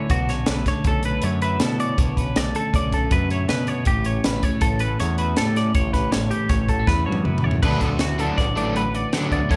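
Math rock and midwest emo in an odd 5/4 at 160 BPM, this intricate, playful excerpt from a longer piece pairs two bright, twangy twelve-string electric guitars, one picking a chordal accompaniment beneath while the other picks arpeggios up high, over a growling overdriven picked bass and a crisp fusion kit with a high-tuned snare, punchy kick and dark cymbals. The band sounds like it is playing live in one sizeable studio room, moving from Bm9 to A7. A drum fill at 6.9 seconds leads into a D69 chord at 7.6 seconds, where a crunchy, double-tracked overdriven guitar riff joins up front.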